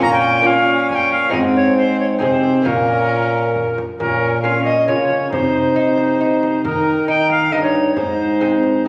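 A bright, pure tenor recorder leads this rustic, solemn renaissance-style consort dance in Bb dorian at 136 BPM in 3/4, its tongued notes carrying a wooden chiff and vibrato up front, while a close, nasal viola with gut-string tone and airy bow supplies a reedy second line. A mellow lute fingerpicks delicate double-strung accompaniment, a warm, distant trombone holds the bass, and a deep, large frame drum sits in the background. Cut from a longer piece, it moves into a new section at 4.0 s, and the recital hall ambience is captured on a phone in the room, with club reverb and compression.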